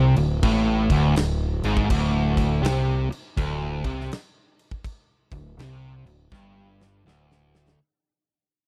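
A dark, overdriven electric guitar riff on a D5 power chord opens this swaggering, driving blues rock and southern rock clip, joined at once by a growling picked electric bass with its own overdrive, sitting low beneath it. The guitar is double-tracked and up front, riding in its low register, while the bass carries a direct-and-amped tone. At 0.2 seconds a huge arena drum kit arrives with a punchy kick, a medium-tuned snare and bright crash cymbals, its sound carried by a hall effect. The groove moves at 82 BPM in 4/4 with a swung eighth-note feel, and a drum fill closes things out from 6.3 seconds as the whole passage fades. The recording itself is dry and close in a 1970s studio manner, framed by small room ambience, and this short cut is lifted from a longer piece.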